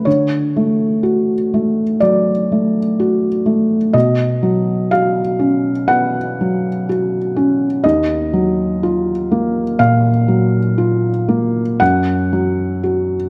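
A felt-muted upright piano plays alone and up front, its mellow, intimate tone ranging from Eb2 to F#5 in this melancholic, wistful neoclassical minimalist fragment in Eb minor at a rubato 61 BPM in 4/4, tuned to A4 = 441 Hz, moving from D to Badd9 to Ebmadd9 under light reverb and a dark production before it is cut from the longer piece.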